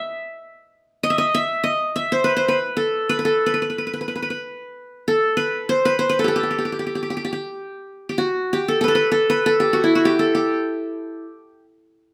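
In free time, this soulful, hypnotic Arabic excerpt features a solo qanun, warm and bright-edged with plectrum-plucked triple strings, sitting up front in the mix across a range of E4 to E5 and ringing in a moderate large-studio reverb until 11.6 seconds.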